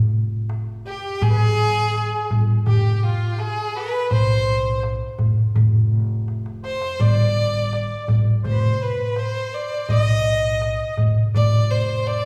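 A straight 4/4 pulse at 83 BPM carries this short Arabic maqam ensemble passage in G maqam hijaz, tuned to A4 = 442 Hz, cut from a longer piece with a longing, melancholic mood. A pizzicato upright bass opens the passage, its gut strings giving a woody, thumpy low end. The darbuka joins at 0.5 s with a clay-shell, natural-skin tone that sits close and dry, and it is the most prominent part in the mix, adding a fill from 6.3 s. At 0.9 s a single bowed violin takes the melody, bright and focused with vibrato, placed up front. An accordion shares the same register as a quieter second line, its reedy, airy voice full and rich beneath the violin. The whole ensemble sits in a wet recital-hall reverb, heard from further back in the room.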